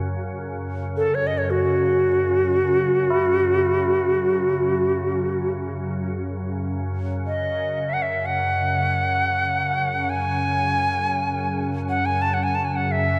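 A soft, organ-like pad drone with a slow attack and ensemble chorus opens this spacious, haunting excerpt of free-time world meditation music, joined at 1.0 seconds by an airy, close-miked cedar flute carrying the melody with vibrato and delay, while tubular bells ring mellow and solemn in the background from 3.1 to 6.8 seconds, all bathed in a wet cathedral reverb within a dark, warm production.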